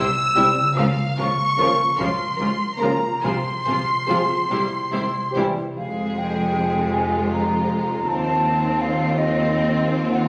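Lush, expressive violins carry the melody from the first moment over an airy, hollow flute line, a distant second violin part, smooth violas, ringing thumb-plucked harp arpeggios, focused cellos and bowed double basses, while warm horns and dark trombones join with sustained chords at 0.4 seconds (the trombones dropping out at 5.5 seconds) in this melancholic, elegiac romantic orchestral fragment in a rubato 6/8, heard as if captured on a phone in a recital hall bathed in club-like reverb.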